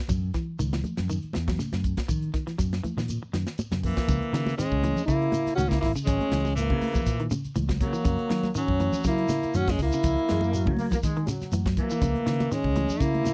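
A dark, up-front trombone with scooped notes and vibrato takes the melody from 3.8 seconds, with a raspy alto saxophone playing a second line and a clear trombone section briefly joining at 10.3 seconds, over a funky, defiant afrobeat groove at 121 BPM in C# dorian built on punchy fingered bass, a tight, dry funk drum kit, high-tuned congas, grainy shekere and bright, clean semi-hollow guitar arpeggios in the background, all captured in a close 1970s-style studio sound.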